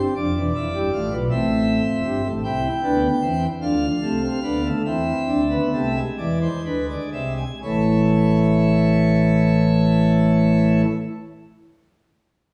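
Classical baroque-style three-part fugue in 6/8, solemn and contemplative, for solo pipe organ on a full, brilliant plenum with mixtures and romantic voicing, spanning E1 to G#5 and slowing from 1.3 to 7.6 seconds as the harmony moves through D minor, A minor, C and E7 before settling on A major, all heard from further back in a wet stone room with a 1.4-second reverb in a short cut from a longer piece.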